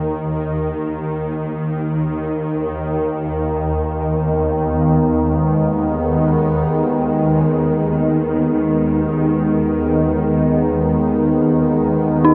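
A swarming, warbling detuned drone with a phaser and granular grain opens this ominous, vast dark ambient fragment, joined at 3.5 s by a bright, sweeping sawtooth pad with chorus and a filter swell on a B/D# chord, before an eerie, inharmonic FM bell with chorus flickers in as an arpeggio at 12.2 s, the whole fragment set inside a cavernous cathedral reverb.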